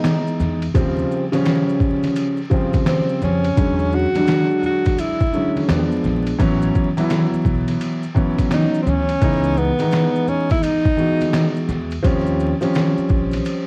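A breathy tenor saxophone, a dark baby grand piano and an overdriven, sampler-style drum kit all begin together in this cool, smoky jazz-hop cut, taken from a longer hip hop piece at 85 BPM in 4/4 with a lazy 16th-note swing. Up front, the saxophone carries a mellow, jazz-style solo line with vibrato and scooped notes, while the piano supplies smooth, long-sustained chords, several of them rootless, that move through C#m9, D#13, E13, E7b9 and A69. The compressed, pitched-down drums sit muffled under cassette tape grit, with a thumpy kick, medium-tuned snare, hi-hat and ride. Soft-handed maracas and congas join at 0.1 s, close and dry in the background, and a woody, growly pizzicato upright bass with transformer saturation enters at 0.4 s. The saxophone drops out at 11.7 s, leaving the rhythm section to carry on in a snug booth ambience, all framed by the vinyl crackle of a home cassette recording.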